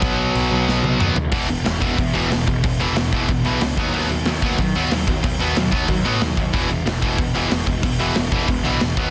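Punk rock at 184 BPM, rowdy and rebellious in this short cut from a longer piece, with a bright overdriven guitar riff up front and a warm overdriven guitar in the background riding over a gritty fuzz picked bass from the very start, while a big acoustic rock kit of crisp cymbals, medium-tuned snare, punchy kick and toms plays half time until a drum fill from 0.7 s launches the full drive at 1.3 s, all moving through chords from B to E5 and B/D#, in a dry, dense, heavily limited modern master.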